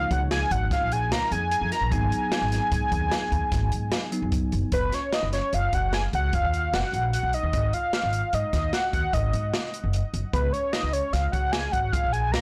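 In a straight 7/4 pulse, this brooding, intricate progressive instrumental excerpt sets a thick, detuned sawtooth unison lead with digital delay up front over woody pizzicato upright bass and an open jazz drum kit with a boomy kick and softly clipped snare, while a bell-like tine electric piano plays clean accompaniment until 4.7 s, the whole captured in a blown-out, overdriven recording with light reverb.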